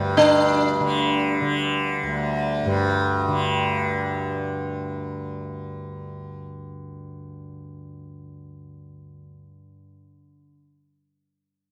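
A plectrum-plucked sitar, warm and alive with sympathetic-string shimmer, sings a longing, introspective phrase around D4 in free time from 0.2 to 4.1 seconds in this Hindustani classical excerpt, tuned to A4 = 437 Hz. Beneath it, an up-front tanpura drone spans D2 to D3 with a bright, softly plucked, buzzing tone. The tanpura carries on alone until 10.4 seconds, captured outdoors with light reverb.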